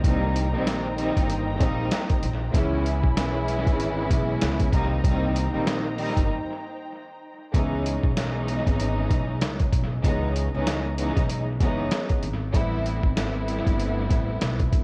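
A compressed, pitched-down sampler-style drum kit with a thumpy kick, medium-tuned snare, hi-hat and analog delay sits up front in this reflective, gritty boom-bap hip-hop excerpt at 96 BPM with swung 16ths, alongside a woody pizzicato upright bass on gut strings and a lush, vibrato-laden bowed string section with a cassette-tape tint over Cm7, C#m7, C#m9 and Am9 chords, while a dark string ensemble holds sustained chords until 7.5 s, in an echo-heavy small-room mix.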